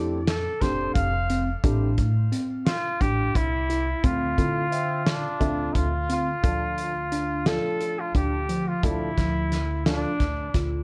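In a straight 7/8, this intricate, brooding progressive band excerpt sets a mellow, roomy trumpet melody with light vibrato and delay over an intimate baby grand piano with audible action noise, slightly out-of-tune tine electric piano arpeggios, woody pizzicato upright bass and a loose drum kit with a punchy kick and a fat snare in a pumping room, while a nasal, brilliant straight-muted trombone adds a brief second line from 4.7 to 6.4 seconds, all colored by light reverb and a worn, warbling cassette-tape pitch drift.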